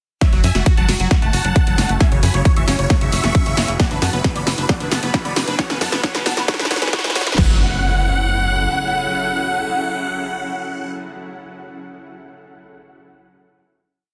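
Emotional and euphoric, this uplifting trance piece at 134 BPM in F# minor is a single build: a huge, detuned supersaw lead plays a repeating sixteenth-note riff in thirds and sixths over a pedal note, colored by phaser, delay and sidechain pumping; a shimmering, ethereal pad with granular texture enters at 1.3 s; a squelchy, resonant acid bass loops a six-step sequence in the background; and a tight, rolling sequencer bass with tube saturation drives underneath, while an overdriven, up-front big-room kit with a four-on-the-floor kick and huge snare plays alongside a punchy analog drum machine supplying hats and backbeat, all beneath a drum fill, filter sweep and background risers and impacts, until the build resolves at 7.4 s into a final F#m7 chord held by the lead and pad in a dense, heavily limited mix with light reverb.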